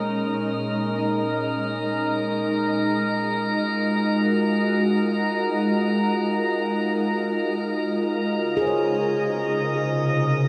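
In free time, this serene, spacious ambient excerpt, tuned to A4 = 438 Hz, floats on a glassy FM pad with slow attacks and long releases, holding mellow, ethereal chords from Bbm7 through Absus2 to Dbmaj9, thickened by ensemble chorus and shimmer reverb. Above it, a calm sine texture of drifting overtones sits up front, sustained and chorused. At 8.6 seconds a close-miked stainless-steel handpan enters with bright, ringing arpeggios and sharp finger strokes, trailed by diffuse delay, all inside a huge, wet room with an 8.0-second reverb tail.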